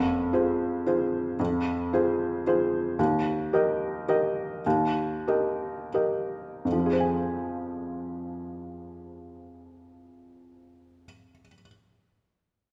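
Fragile and longing, this brief classical passage in 3/4 is lifted from a longer piece and moves with a pliant, rubato feel. A felt-muted upright piano carries the accompaniment throughout, its tone muted and mellow, with thin felt, short sustain and audible action noise that make it feel intimate and up front. The harmony settles on F minor, moves to E-flat, then returns to F minor as a second section begins at 6.6 seconds. The pace slows from 2.2 seconds up to that point, giving the opening phrase a hesitant, searching quality. A wet, church-like reverb surrounds the close, natural piano sound with a soft halo of space.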